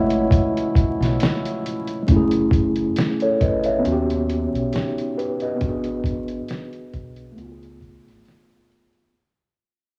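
A mellow, up-front tine electric piano leads this melancholic, reflective lo-fi hip hop excerpt at 68 BPM with a light 16th-note swing, taking a solo spot over a smooth, tight brass ensemble chord with light vibrato that stops at 2.0 seconds. A dark, round dub bass with transformer saturation and an up-front, muffled, pitched-down sampler drum kit with a thumpy kick and fat snare play amid cassette grit, vinyl crackle and small-room ambience as the music fades out from 2.1 seconds through chords moving from F#m9 to C#7b13.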